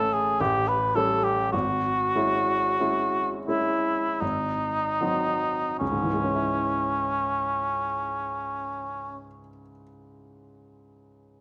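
In a slow 3/4 that drifts between 36 and 56 BPM, the rubato pulse stretches and holds back through the first 5.8 seconds, giving this short romantic classical duo a yearning, melancholic sway. A mellow cor anglais carries the melody up front, its classical-style tone touched with light vibrato across a modest middle range, and it falls silent at 9.3 seconds. Beneath it, a baby grand piano supplies accompaniment with a clear, polished and present sound that reaches down into the deep bass and plays on alone until 11.4 seconds. The harmony, in C# minor and tuned to A4 = 439 Hz, moves from A7 through C#m/G# and G#7 before settling on C#m as a new section opens. A moderate recital hall reverb lends the pair a natural sense of space in this fragment cut from a longer piece.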